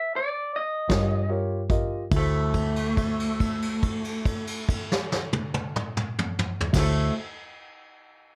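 A slow 12/8 blues at 47-56 BPM in D mixolydian opens with a clean electric guitar alone, twangy and slightly broken-up through a small old amp, slowing down over the first 2.1 seconds before the band enters at 0.9 seconds on an Eb9 chord. A woody, mellow upright piano with long sustain, a round, foam-muted electric bass and a brush kit with dark cymbals and a punchy kick settle onto D7 beneath the up-front guitar, and a note is held from 2.1 to 6.7 seconds. Light reverb frames this soulful, gritty excerpt in a dark, warm sound cut from a longer piece.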